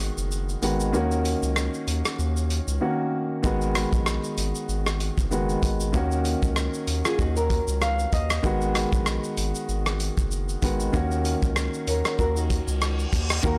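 Dancehall with a sultry, bouncy swing, cut from a longer piece, opens on a break where a boxy baby grand piano, a round, deep analog bass and a loose indie drum kit of hi-hat, tight kick, rim click and shaker sit in a small room, the snare softly clipped and the whole recording blown-out and overdriven. A dark, fingerpicked nylon-string guitar adds arpeggios from 7.1 seconds, the piano takes a fill, and the chords move between Abm7 and Ebm7. A reverse cymbal enters at 12.7 seconds before a glassy, ethereal FM pad barely registers at the very end.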